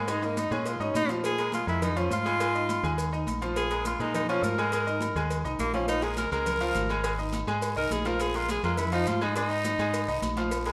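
A clear, forceful tenor saxophone with light vibrato solos up front over a bright, intimate baby grand piano and a dark, round fingered electric bass in this fiery, driving salsa excerpt, while ringing timbales and agogo bells, high-tuned congas, a tight cowbell and grainy maracas sit in the background of a large studio room, joined by a raspy guiro from 5.9 seconds.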